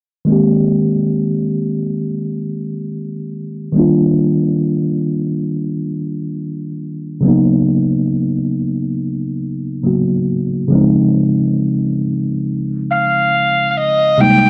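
Dreamy and tender, this slow R&B excerpt at 69 BPM in Ab major rests on a worn, slightly out-of-tune tine electric piano playing clean, up-front chords from Abmaj9 through Ebmaj9, Bmaj9 and Dbmaj9 beneath a filter sweep, until an airy, chiffy wooden soprano recorder with tape echo enters at 12.9 s for a brief, unsteady melody, the whole set in a small room with light reverb and a dry, gritty, low-passed sound.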